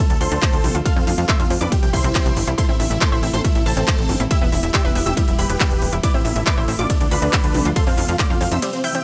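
A straight 4/4 pulse at 139 BPM drives this euphoric, emotional uplifting trance excerpt in A minor, where an up-front, heavy electronic kick and a tape-warm techno kit of handclaps, smooth hats, ride and toms sit beneath a tight, nasal sequencer bass, a huge, detuned supersaw lead carries the melody through phaser, sidechain pumping and digital delay, a punchy unison pluck plays a second line high above it, a round analog pluck with chorus plays arpeggios in the background, and a very quiet, lush, warbling pad sustains chords moving through Dm, F, C, Am and Em, all in a dry, softly rolled-off mix that reaches a brief break at 8.6 seconds.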